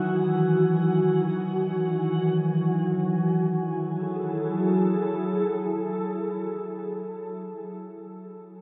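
Floating in free time, this short ambient passage, cut from a longer piece, feels melancholic and reflective. A glassy, ethereal FM pad sits up front, its slow-attack chords moving from Emaj9 to F#m9 at 3.2 seconds through an ensemble chorus and its own built-in reverb. Beneath it, a very quiet analog drone of sawtooth and pulse waves keeps evolving under pulse-width modulation and chorus. A clean electric pedal steel guitar, played with fingerpicks and slide, offers a brief compressed melody in volume swells that ends at 2.4 seconds, trailing a diffuse ambient delay. The recording is bathed in a huge 7.5-second reverb and the worn, warbling pitch drift of old cassette tape, with a dulled top end.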